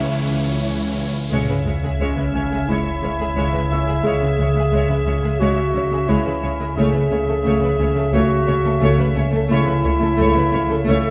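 Ominous and mysterious, this 88 BPM suspense film cue in C# minor sets a rich chamber violin melody over lush symphonic violins, bright, intense violas, a ringing fingerpicked harp riff, very quiet chamber cellos and double basses, a deep rumbling drone and a faint bell-like celesta, while an electronic riser gives way to a sub drop impact at 1.3 s, a high violin texture enters at that point, and a mellow, distant clarinet joins at 2.0 s, all in a dark production on a reverberant scoring stage.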